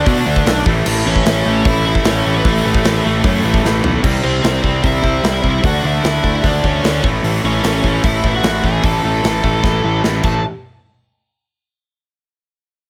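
Upbeat and rebellious, this punk rock excerpt in straight 4/4 sets a dark, distorted bluesy lead guitar melody over two bright picked guitar riffs in the background, one overdriven and compressed, the other tight and distorted, while a growly fuzz bass and a punchy, up-front acoustic drum kit drive through chords moving from D5 to A, C and D, with drum fills at 3.6 and 9.6 seconds before everything stops at 10.4 seconds.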